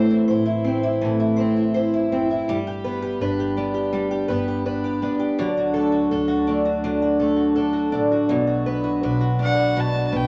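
A shimmering, octave-doubled fingerpicked twelve-string acoustic guitar sits up front in this carefree, easy-going acoustic pop excerpt, over full-bodied picked arpeggios from a steel-string acoustic guitar with audible finger squeak and a woody pizzicato upright bass, while a dark, boxy upright piano slips in very quietly at 8.3 seconds and a biting, earthy bowed violin with light vibrato takes the melody from 9.4 seconds, set in a small, wet room.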